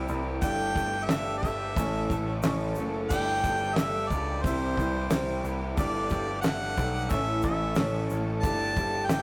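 Jangly and nostalgic, this short cut from a longer folk rock and heartland rock piece moves at an unhurried, straight four-beat pace over chords that circle between Gsus2 and A, with a turn to C. Up front, a clear harmonica carries the melody with light vibrato, scooped notes and a smooth top, while a picked steel-string parlour acoustic guitar with fresh strings plays beneath it. A bright, overdriven garage guitar plays a double-tracked riff with spring reverb, and a direct, warm picked electric bass sits prominently underneath. A woody upright piano adds very quiet, open accompaniment, and a grainy tube shaker enters at 0.1 s in the background. The damped 70s drum kit comes in at 0.4 s with a fat snare, tight kick, hi-hat and dark crash cymbal, all dry and polished, and the whole take has the rough, saturated feel of a rehearsal room with a moderate small-room ambience.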